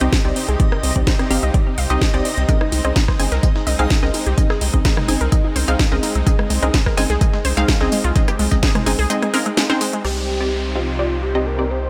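An up-front, deep electronic kick and round, nasal analog bass drive this dreamy, emotional progressive house excerpt at 127 BPM, joined by a tape-warm house kit with cracking snare and metallic hats, a very quiet pitched-up tambourine and snare, background analog congas, woodblock and toms, a crystalline wavetable pluck arpeggio under a filter sweep, punchy unison pluck stabs, a lush, pumping supersaw pad and a faint reversed granular texture, moving from Cmadd9 to Ab in a light reverb until a thick unison lead with 12-bit sampler grit and an electronic downlifter arrive at 10.0 seconds.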